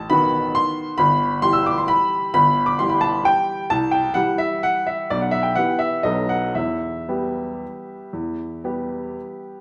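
Nostalgic and elegant, this short classical piano waltz excerpt in E minor moves in a rubato 3/4 between 111 and 141 BPM, its clear, woody upright piano sitting up front as a solo voice spanning G1 to E6 in a wet recital hall, passing from B7 over A through E minor, C and B7 before settling on E minor at 6.5 seconds.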